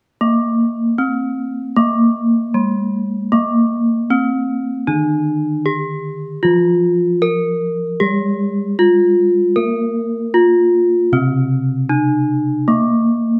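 Two bronze metallophones sound together from 0.2 s in this serene, shimmering gamelan passage, cut from a longer piece and pitched in Bb slendro with a tuning reference of A4 = 436 Hz. The melody instrument sits up front, its metallic, ringing tone struck with a horn mallet and carrying a vintage, band-limited colour as it moves through its upper register. Beneath it, a second metallophone plays the accompaniment more softly in a lower range, struck with a wooden mallet; its paired tuning produces shimmering beats, giving it a dark, smooth glow. The tempo is an unhurried 77 BPM in a straight 4/4 feel, and the whole fragment stays within a single section until both parts stop at 13.4 s. A moderate recital-hall reverb lets each struck note linger in the surrounding space.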